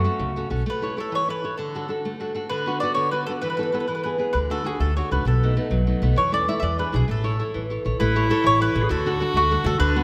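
This short passage from a romantic, lively Italian serenade opens with a round, double-stringed mandolin carrying the melody over a fingerpicked nylon-string guitar, a brief bright clarinet figure and a woody upright bass. The straight 6/8 metre gives it a folk character, and the progression moves through familiar major-key harmonies with a suspended chord resolving before the phrase settles home. The classical guitar sounds full-bodied and up front, with an audible finger squeak now and then. The pizzicato bass, growly on steel strings, drops away after 0.6 seconds and returns at 4.3 seconds to anchor the low end. The clarinet, in a classical solo style, comes back at 8.0 seconds to add a second line as the melody begins again, all set in a moderate concert hall reverb that lends a warm, spacious glow.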